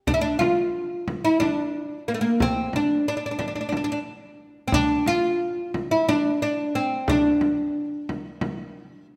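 Soulful and longing, this short excerpt of a Turkish makam ensemble piece in D makam ussak moves in 7/8 at 180 BPM in eighths, with a bright, woody, fretless oud plucked with a plectrum on double strings carrying the melody up front between A3 and F4 while a large, deep frame drum sits close and dry beneath it at a lower level, all set in the lingering bloom of a recital hall reverb.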